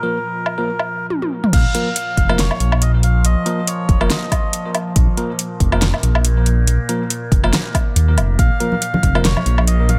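Deep dubstep at 140 BPM in Bb minor, meditative and cavernous, with a swung half-time feel: a reedy, breathy melodica carries the melody through dub echo while a resonant drone with moving overtones holds sustained chords in chorus and its own reverb, and a bell-like tine electric piano adds filtered, echoing stabs. After a drum fill at 1.1 seconds, the drop lands at 1.5 seconds, bringing in a deep, rumbling detuned saw bass up front and an overdriven electronic kick beneath the overdriven deep house kit that entered at 0.5 seconds, with its fat snare, metallic hats, crash, toms and woodblock. Damped, thick-skinned congas join at 8.7 seconds in this fairly dry excerpt from a longer piece.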